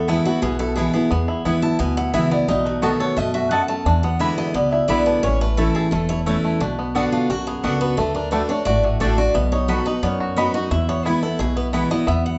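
Soaked in a large studio reverb with a capped top end, this live-in-one-room bluegrass excerpt drives along at 175 BPM with rustic energy: a bright, full-bodied picked dreadnought guitar carries the melody with audible finger squeak over a second fresh-stringed dreadnought sitting up front on accompaniment, while a twangy, percussive fingerpicked banjo plays arpeggios, a woody, dark pizzicato upright bass holds the low end, and a warm double-string mandolin adds stabs from 0.1 s to 11.8 s as the chords move from E through B7 and A to Bm, D and back to E.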